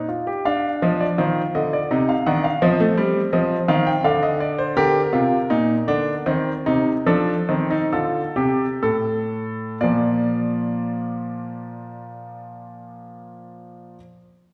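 In a straight 3/4 pulse between 58 and 85 BPM that slows from 3.7 to 9.8 seconds, this lively, joyful baroque-style three-part fugue in Bb major, cut from a longer piece, is played by a solo grand piano sounding clear, intimate and up front, with audible action noise and long sustain, set in the wet reverb of a church or concert hall, as chords like Dm7, Cm/Eb and F7 resolve to Bb at 9.8 seconds.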